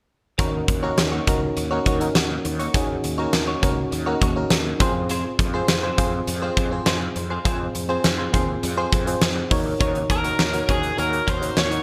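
A straight 4/4 pulse from a huge arena drum kit, with a fat snare and punchy kick up front, drives this moody, dramatic slice of 1980s-style pop, where a glassy, bell-like FM electric piano with chorus and a bright, compressed clean guitar riff treated with analog chorus and delay ride over a growly fretless bass with ensemble chorus, and at 10.1 s an overdriven lead guitar through a small cranked amp joins them to take the melody, the whole mix sitting in a moderate plate reverb with a bright digital sheen.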